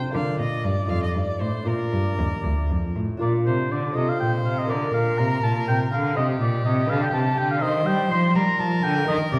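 Heard from further back in a wet recital hall, this radiant, dance-like baroque-style sonata movement in 6/8, cut from a longer piece, sets a clear violin melody with light vibrato alongside a smooth oboe second line that sits up front, while a rich, expressive cello with portamento anchors the bass and a mellow, fingerpicked nylon-string lute adds delicate accompaniment, with a new section arriving at 3.2 seconds.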